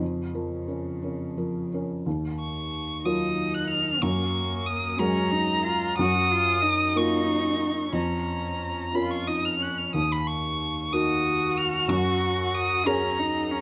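A light reverb surrounds this short, melancholic neoclassical piece for piano and strings, cut from a longer work and unfolding in a slow, rubato 6/8 full of longing. A felt-muted upright piano, soft, mellow and intimate with a vintage character, sits up front with the accompaniment, while a rich, evenly bowed cello with vibrato carries a second line from the opening. At 2.4 seconds a single violin enters high with the melody, expressive and warm, its vibrato and portamento drawing out the yearning harmonies.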